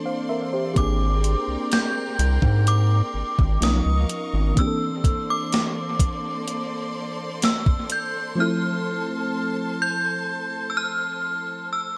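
A dry, echo-heavy mix carries this moody, late-night contemporary R&B excerpt at a slow 63 BPM in 4/4. A soft, dark FM electric piano with chorus and analog delay plays over distant, lush bowed strings holding sustained chords, moving through maj9#11 harmonies before settling on Fmaj7. At 0.8 seconds an inharmonic, ringing synth chime takes the melody, treated with ensemble chorus, tremolo and delay, while an up-front, deep, wave-folded analog bass plays until 4.5 seconds and an overdriven 80s drum machine with a thumpy kick and gated-reverb snare runs until 8.1 seconds.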